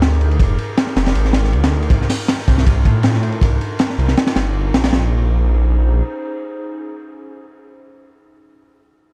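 A thick, menacing detuned saw bass drives this raw, frenetic drum and bass track at 159 BPM until 6.0 s, with a crunchy, saturated breakbeat kit (a high-tuned snare, punchy kick and dark cymbals) up to 5.0 s, while a warbling, lo-fi pad with chorus and reverb sustains Fm11, Cm11 and Bbm11 chords through 8.0 s in a small, dark room.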